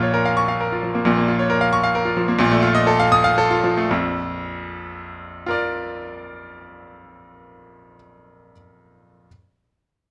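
Passionate and agitated, this brief cut from a longer classical virtuoso piano study in a rubato 6/8 features a bright baby grand piano playing solo from Bb1 to Eb6, its brilliant, intimate tone heard up front with audible action noise and short sustain under light reverb, slowing down from 0.4 to 3.9 seconds as the harmony moves from Bb minor through F7 over Bb to a close on Bb major.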